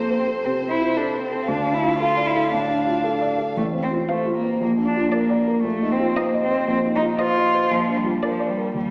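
In a flexible, rubato 4/4, this quick, graceful and cheerful classical-period movement for piano trio is cut from a longer piece, with a muted violin singing the melody in a veiled, vibrato-tinged voice, sounding con sordino and bowed. A dark, smooth-topped muted cello carries the second line up front, while a mellow concert grand with deep bass, short sustain and a vintage character supplies the accompaniment, also up front. A wet reverb places the trio in a church or concert hall, though the overall sound has a small-speaker quality, and the violin drops out at 8.6 s just before the other two finish.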